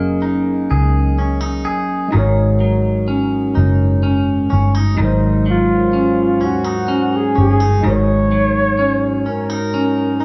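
Slow six-eight R&B at 42 BPM with an intimate, sensual mood, this excerpt sets a dark, round, foam-muted fingered electric bass and a barky, lightly overdriven tine electric piano with lush chorus over a Gb69 chord moving to Ab7sus4, while a twangy, clean picked electric guitar with spring reverb plays a second line and a breathy, whispered flugelhorn with vibrato and scooped notes enters at 5.0 seconds to carry the jazz-style melody, inside a light digital studio ambience.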